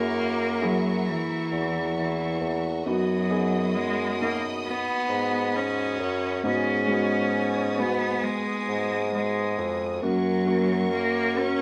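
Hopeful and tender, this slow pop ballad excerpt at 67 BPM in F# major features a clear, bowed cello singing the melody with smooth, even vibrato, set distant yet up front, while a woody upright piano with long sustain supplies polished accompaniment. Beneath them a solo bassoon carries the bass line in a classical style, and a lush studio string section holds sustained chords high above with expressive portamento. The ensemble plays together in one large room with moderate reverb, moving through F#7, B/F#, G#m7 and back to F#.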